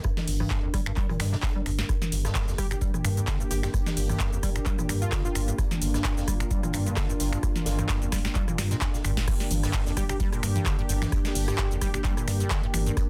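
Acid house at 130 BPM in G minor pentatonic, trippy and driving, with a swung sixteenth feel in this excerpt cut from a longer piece. A deep electronic kick and a booming analog drum machine with crisp snare, metallic hats, claps, snaps, shaker and toms drive a rubbery, resonant square-wave acid riff with analog chorus, while a round sawtooth-and-sine bass pumps beneath and a quiet unplugged kit played with bundle sticks sits in the background. A dark, moody ambient pad adds sustained texture while a smooth, detuned analog pad holds sustained chords, both chorused and pumping. A punchy, catchy unison lead with tape echo appears from 2.6 seconds and returns at 10 seconds, during the drop that begins at 9.3 seconds, all under a dense, heavily limited master with light reverb.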